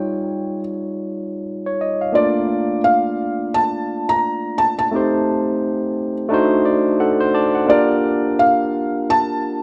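A lightly swung 16th-note groove at 87 BPM in 4/4 carries this smooth, warm soul fragment in Bb major, moving from Eb9 through Bbmaj7 and D7b9 to Gm7. Up front, a felt-muted upright piano with audible action noise and short sustain carries the melody between D5 and Bb5, touched with slapback echo. Beside it, a bright, barky tine electric piano, lightly overdriven through a combo amp, plays the accompaniment and adds a fill from 6.3 to 7.7 seconds, all set in a moderate plate reverb within a rough home-demo mix.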